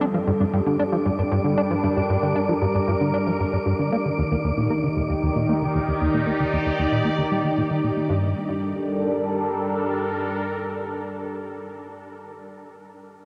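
Soaked in a huge, dreamy reverb with a cassette-tape haze, this expansive, mysterious stretch of sequencer-driven space music in G minor moves at 115 BPM in a straight 4/4, as a punchy, funky analog bass riff with ring modulation and a filter sweep sits up front until 8.3 s beside a detuned, resonant sweeping pad sustaining chords from Gmadd9 to Ebmaj7 and back through 12.6 s, while a very quiet, evolving analog drone and an airy, breathy wind-like tuned noise texture hover alongside.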